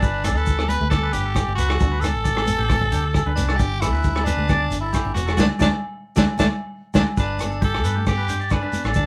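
Recorded live in one room with light reverb, this sunny, straight 134 BPM highlife guitar band excerpt in G major features a raspy, growling tenor saxophone carrying the melody over twangy clean electric guitar arpeggios, a fingerpicked steel-string acoustic guitar in the background, a round, dark hollow-body electric bass, and a muffled, lo-fi vintage drum kit up front with a punchy kick, while soft congas, a grainy shekere and distant ringing agogo bells fill in the percussion, with a band accent from 5.4 seconds and a drum fill leading into a new section at 7.2 seconds.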